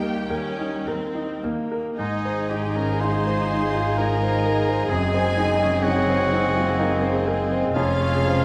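Lyrical and passionate, this short cut from a romantic piano-and-orchestra movement moves in a rubato 3/4 at 52-65 BPM in Ab major, with a clear, up-front grand piano carrying the melody over rich, vibrato-laden violin sections (one very quiet and distant, one smooth-topped in the background), focused violas, lush cellos and an expressive double bass section with portamento entering at 0.3 s, while from 2.0 s a close-miked oboe, a very quiet clarinet, a pure straight-toned flute and a distant French horn section holding sustained chords join in, followed by a mellow, roomy bassoon at 3.0 s, all set in a wet recital-hall reverb as the harmony moves from Eb through Ab and Ab7/Gb to Db/F.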